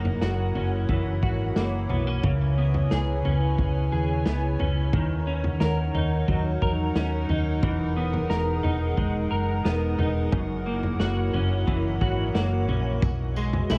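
A straight 4/4 dream-pop pulse at 89 BPM carries this haunting, melancholic fragment of a longer piece, where a dark, up-front clean electric guitar picks arpeggios through chorus and delay over a round, hollow-body fingered bass and a muffled, lo-fi vintage kit of punchy kick, medium-tuned snare, tambourine and toms entering at 0.1 seconds, while a warbling, nostalgic tape-like pad with chorus and phaser sustains mellow chords through F#7, C#m7, D#m7, Emaj9#11 and a return to F#7 before resolving toward B6 at 13.0 seconds, all set in light reverb and small room ambience.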